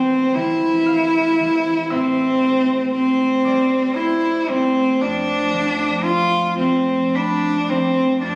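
A phone recording of the room gives this serene, tender fragment a moderate stage reverb and a compressed sound. In a romantic classical duo at a slow, rubato 58 BPM in 3/4, a single bowed cello sits up front with the melody, singing in a warm tone between C4 and F4 with vibrato, soft attacks, expressive portamento and sliding between notes. Beneath it, a ringing, fingerpicked concert harp spans C2 to B6 in the accompaniment, moving from C to Am7 at 1.9 seconds and to Dm7/F at 5.0 seconds.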